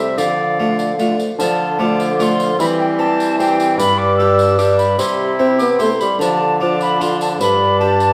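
Courtly yet rustic, this short cut from a Renaissance-style consort dance in triple time sets a warm oboe melody with light vibrato beneath an airy, mellow alto recorder line that sits higher and sounds more prominent, while a round, plucked Flemish-style harpsichord and one bassoon fill the accompaniment, a second bassoon carries the bass, and a faint, jingly tambourine enters at 0.2 seconds, all heard from further back in a wet stone room as the harmony moves from D minor through C and G, back to D minor and on to G.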